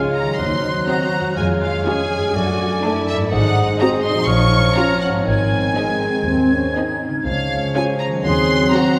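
Playful and magical, this short cinematic film cue is cut from a longer piece and moves in a straight 4/4, steeped in the wet reverb of a concert hall. A focused chamber violin section carries the melody from 0.1 s, with an airy, close-miked flute, a distant clarinet and a very quiet, lush symphonic violin section with portamento as second lines, while a mellow bassoon, a smooth studio viola section, a dark French horn section holding sustained chords and a ringing, fingerpicked harp playing arpeggios fill in beneath. A woody cello section and a chamber double bass section, which enters at 0.4 s, form the bass under chords that begin on Cdim/Eb, pass through Ab7 and Bbm, and reach Db before returning to Cdim/Eb.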